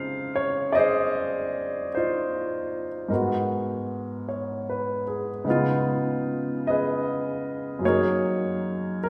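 A warm baby grand piano plays alone in this intimate, melancholic jazz ballad, its natural, up-front tone moving through Dbmaj9, Abm7, Db9 and Gb69 in a 4/4 swing, spanning Gb2 to F5. The piano sits in a wet recital hall reverb with a 1.8 s decay, captured in a church or concert hall, and lossy compression artefacts colour the sound. The 9.1-second passage is cut from a longer piece.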